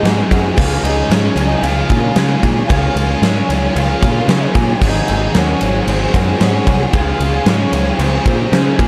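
A dark, lightly reverberant production frames this blissful, wistful fragment of shoegaze-tinged dream pop rock in Db major, moving at 113 BPM in a straight 4/4 through Ab7sus4, Db and Dbmaj7 chords. A huge arena drum kit sits up front with a punchy kick, fat snare and bright cymbals in a pumping hall, beside a growling overdriven bass, while two biting overdriven guitars play riffs in the background, one washed in lush chorus and the other in reverse reverb. A distorted octave-fuzz lead guitar carries the melody through digital delay over a very quiet, cloudy granular pad of blurred, detuned sustained chords, and from 0.6 seconds a shimmering twelve-string acoustic guitar adds faint picked arpeggios with audible finger squeak.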